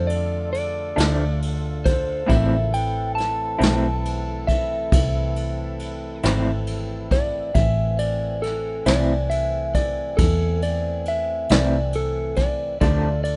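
An electric slide guitar carries a mournful, soulful solo across this slow blues in 12/8 at 46 BPM, its slightly broken-up tone compressed and sitting in A harmonic minor over a mellow horn section held in the background and a fat tonewheel organ with key click, light overdrive, chorus vibrato and a slow rotary speaker. Underneath, a foam-muted electric bass with a round, dark, amped sound and a brush drum kit with a punchy kick and dark cymbals sit up front, while an electric guitar through a small old amp adds lo-fi accompaniment with tremolo from 1.0 seconds. The harmony moves from Dm to Am at 2.3 seconds and back to Dm at 12.8 seconds, all captured as a rough home demo in a small room, cut from a longer piece.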